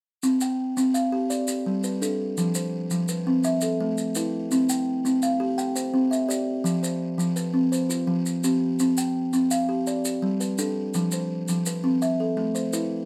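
A wet studio reverb gives this short cut from a longer piece a close, roomy glow, with the buzzing kalimba sitting up front and the maracas tucked well behind it. It is a warm, rippling southern African traditional piece built on an mbira-style interlocking cycle, moving at 112 BPM in a straight 12/8 in C major, tuned slightly below standard pitch. The kalimba carries everything melodic, playing thumb-plucked arpeggios from F3 up to G5 from 0.2 to 13.1 seconds, and its woody, hollow-box tone rings out with a distinctive buzz. The maracas add a grainy, mellow shake from 0.2 to 12.9 seconds, their acoustic sound compressed and saturated. The harmony circles through C, G, F and A minor, returning to C and closing on A minor at 12.0 seconds.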